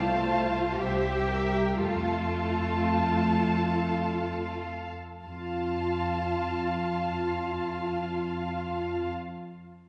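Lyrical and warm, this brief excerpt from a slow romantic movement for string orchestra sits in F major and 3/4, moving with a rubato feel between 50 and 70 BPM and slowing down over its first 5.2 seconds. Muted violins carry the melody between G5 and A5 with a veiled, lush vibrato and soft attack, while a second violin line spans A4 to F5 beneath it. The con sordino violas fill in the accompaniment with light vibrato and a smooth top, and the cellos and double basses share the bass, the cellos dark and lush, the basses sitting up front yet carrying a distant shade. All five sections play together for the whole 9.1 seconds, passing from F/C to C7 and settling on F by 1.8 seconds before a second section begins at 5.2 seconds. A generous scoring stage reverb with a 1.8-second decay places the hushed ensemble further back in the room.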